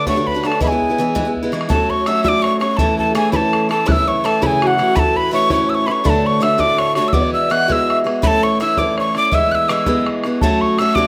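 A breathy metal whistle leads this lively, cheerful Celtic folk jig in 6/8. It sits up front with vibrato, tongued notes and a breathy chiff. A bright, boxy parlour-style steel-string guitar, also close in the mix, picks out the accompaniment through changes such as F#m, A, D and Eadd9. In the background, a ringing, fingerpicked Celtic harp and a distant, hollow wooden flute with a pure tone both play second lines beneath the whistle, and the flute drops out at 10.1 seconds. An open, boomy bodhran drives the straight jig feel with a live-room character. A moderate studio reverb gives the ensemble a cohesive space in this short cut from a longer piece.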